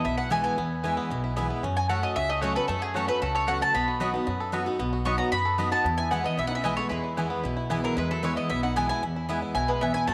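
A lively, joyful bluegrass excerpt at 227 BPM in E major opens with an up-front mandolin melody carrying a slapback echo, over a bright, full-bodied picked steel-string guitar and a twangy, percussive banjo playing arpeggios. A woody, dark pizzicato upright bass and a mellow second mandolin adding stabs in the background fill out the E, F#m and B changes. At 5.3 s a metallic, nasal lap resonator guitar played with slide and fingerpicks joins with a second line, all set in a moderate plate reverb.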